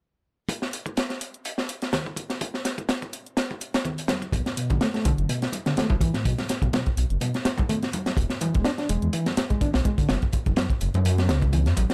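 Dry and close, this raw, energetic breakbeat excerpt opens on a crunchy, gritty drum kit up front with a punchy kick and high-tuned snare, an analog electronic hi-hat tucked in the background, and ringing, vintage congas joining at 1.9 seconds, before a deep, rumbling detuned saw bass arrives up front at 4.3 seconds and a reedy, lightly overdriven electric piano with tremolo and dub echo enters at 4.6 seconds over Bm7, E7 and F#5 chords.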